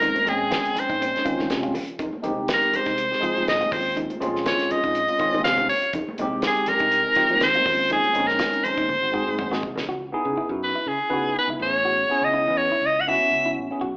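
Electric jazz fusion with a nocturnal, funky mood at 122 BPM, where an edgy, forceful soprano saxophone with vibrato leads up front over a clean tine electric piano with phaser, background compressed guitar stabs, a round fingered bass, a damped 70s kit with a fat snare and tight kick, and high-tuned ringing congas, all captured live in one room with AM radio sound, the drums and congas dropping out at 9.9 s after a drum fill and electric piano fill as the chords shift from Eb13sus4 and Fm9 toward C#m7 and Amaj7.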